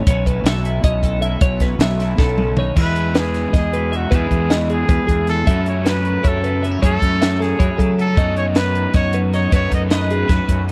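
Dry, close 1970s-style studio sound with lossy compression artefacts frames this intricate, playful excerpt of math rock and midwest emo in 7/8 and E major at 311 BPM, where a fuzzy, overdriven fingered bass and a compact cocktail drum kit with a high-tuned snare, punchy kick and dark cymbals sit up front beneath two bright, twangy twelve-string electric guitars, one playing chorused accompaniment and the other picking arpeggios. After a drum fill ends at 2.8 seconds, a distant, roomy trumpet enters with a scooped, lightly vibrato pop-style solo carrying slapback echo, while a crunchy, double-tracked overdriven guitar riff joins in the background. The harmony moves from B9sus4 to Emaj7, F#m7 and B7/F#.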